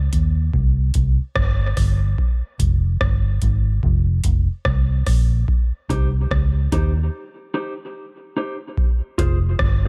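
A dark, round, muted electric bass sits up front in this hypnotic, meditative dub reggae fragment, moving over a booming analog drum machine with a deep kick, metallic hi-hats and rim clicks that carry a tape-warm character, all with a swung sixteenth-note feel. At 5.9 seconds a mellow, clean, compressed electric guitar enters quietly in the background, soaked in tape echo. The mix is dry of reverb but heavy on echo, and the harmony shifts between C minor and F minor.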